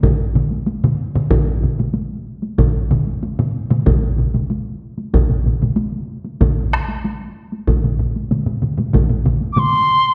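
A steady, straight 4/4 pulse at 94 BPM drives this powerful, ceremonial Japanese taiko ensemble excerpt, where three solo taiko drums played with heavy and hard sticks, one up front in a small room and two close in the background, play alongside a dry, close taiko ensemble until a mellow, pure wooden piccolo with vibrato and a crisp attack enters at 9.5 seconds, all set in a dark production with wet stage reverb.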